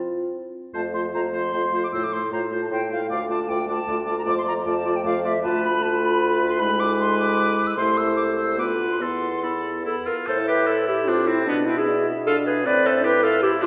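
This excerpt from a longer classical-period movement for wind quintet opens with a mellow clarinet and a warm French horn sounding together in F major, in a quick, urgent 3/4 at 153 BPM that is played with rubato. At 0.7 s the clear oboe takes up a second line and the mellow bassoon lays down a low bass, and a moment later the silver concert flute enters with the melody, ranging up to E6 with a pure tone and vibrato. The mood turns stormy as the harmony moves to A minor at 5.4 s, passing through tense half-diminished and dominant chords before settling onto A minor at 10.3 s for a closing passage. The clarinet sits slightly forward of the other parts, while the horn stays softest, and the bassoon and oboe carry a light vibrato. The whole ensemble is heard from further back in a reverberant recital hall, which lends the stormy writing a spacious, resonant sheen.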